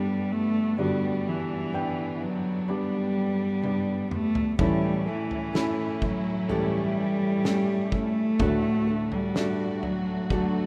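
A nasal, bowed cello sings a heartfelt melody up front over soft, felt-muted upright piano and a lush string section in the background, before a loose indie drum kit with a fat snare and punchy kick enters on a fill at 3.6 seconds and a bright, fingerpicked nylon-string guitar adds arpeggios from 4.6 seconds, all moving through G, A and D chords in this tender pop ballad fragment with moderate plate reverb and a rough home-demo feel.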